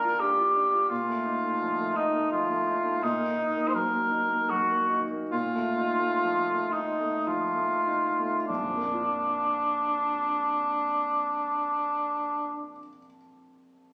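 A mellow cor anglais with light vibrato sings a tender, serene romantic melody up front but with a distant, roomy quality, stopping at 12.7 seconds, while a clear, intimate baby grand piano with audible action noise accompanies in a rubato triple metre that slows from 2.0 to 8.5 seconds, its chords moving from Bb through F7/Bb and Ebm/Bb back to Bb, the piano ringing on alone until 13.9 seconds in this classical fragment cut from a longer piece, heard through a moderate reverb and the compressed club ambience of a phone recording.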